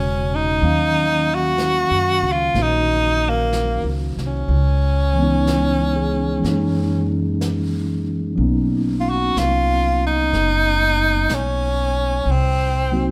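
A moderate large-studio reverb gives this intimate, wistful jazz ballad excerpt a roomy glow, with a gentle swing in its slow 4/4 pulse. Up front, a tenor saxophone carries the melody in a punchy, forceful, edgy solo voice shaded with vibrato, staying within a fairly low register. Beneath it, a clean tine electric piano, heard through its built-in speakers, spreads the accompaniment across a broad range, moving from an E6/9 through Ebm7, Dbm7, Gb13 and Bmaj9 before settling on Cm7b5 near 12.3 seconds. A pizzicato upright bass with steel strings adds a woody, thumpy foundation. A brush drum kit with a medium-tuned snare and hi-hat joins at 0.6 seconds, sitting naturally in the background of the studio room.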